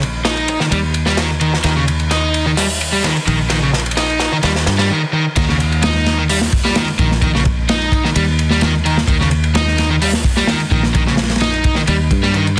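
Playful and energetic, this breakbeat excerpt runs at 129 BPM in a straight 4/4, centered on Eb mixolydian with the harmony resting on Eb. A crunchy acoustic breakbeat kit sits up front with a dark, gritty character, its tight kick, medium-tuned snare and dark cymbals (crash, ride and hi-hat) all carrying a saturated, rolled-off top. Beneath it, a fingered electric bass moves between Bb1 and G2 with a round, foam-muted tone given a touch of tube saturation. An overdriven, picked electric guitar enters at 0.2 seconds with a warm riff between Db3 and Eb4, colored by tube saturation and digital delay and placed up front. The opening build-up features a drum fill from 1.6 to 4.9 seconds before the drop lands at 5.4 seconds, all set in a small room with light reverb and a dense, heavily limited modern master.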